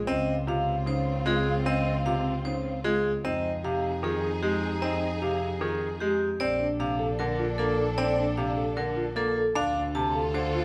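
Heard in a moderate recital-hall reverb, this propulsive, hypnotic stretch of minimalist classical pattern music, cut from a longer piece, puts a metallic, ringing vibraphone with hard mallets mid-forward on the melody. A brilliant concert grand with audible action noise and deep bass carries the accompaniment, a woody marimba with soft mallets plays mellow arpeggios in the background, a focused studio string section holds bowed chords with vibrato, and a single bowed double bass plays an even, up-front bass line. The harmony moves from Dbmaj7 and Fm7 to Bbmaj7 at 6.4 seconds, then turns to Dm at 9.6 seconds.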